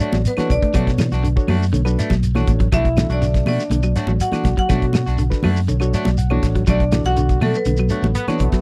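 A dry, close 1970s-style studio sound frames this driving, funky afrobeat excerpt in B minor at 122 BPM, built on a damped 70s drum kit with a tight kick and rolled-off top, an up-front, round and punchy fingered electric bass, and grainy shekere, with high-tuned congas and woody claves sitting in the background. A bright marimba struck with hard mallets carries the melody over a Bm7 chord, shadowed by a veiled, growling trombone with bucket mute whose raspy vibrato and scooped notes add grit, while a reedy electric piano comps cleanly and adds a fill from 5.7 to 6.7 seconds. Two slightly broken-up electric guitars fill out the groove, one twangy with spring reverb playing fingered arpeggios and the other picking stabs, before a loose, bright trombone section with light vibrato enters at 8.2 seconds.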